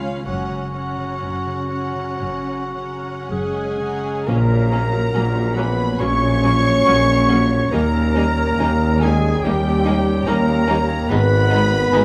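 Rubato in 4/4, this tender, lyrical slow movement for symphony orchestra, cut from a longer piece, sets a lush, bowed violin section melody with vibrato over a focused, distant chamber violin line, a roomy solo clarinet, smooth viola accompaniment, ringing fingerpicked harp arpeggios and rich cello and double bass sections, before a very quiet, pure flute section, dark French horn chords and mellow trumpet stabs enter at 3.3 seconds and bright trombone chords and a clear tuba bass join at 4.3 seconds, the whole orchestra set in a moderate recital hall reverb.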